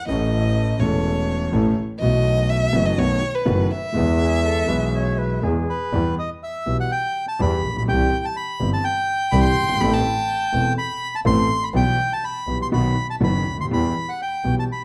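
A rubato 4/4 tango at 124 BPM, melancholic and tense, opens in E major with a close, expressive bowed violin solo full of vibrato and portamento, briefly joined by a pure, straight-toned flute at 4.2 s, before shifting to E harmonic minor at 5.9 s, where a reedy, dark, up-front bandoneon takes the melody over an intimate piano with audible action noise and deep bass and a biting, nasal, earthy bowed double bass, in a dark production with moderate large studio reverb, cut from a longer piece.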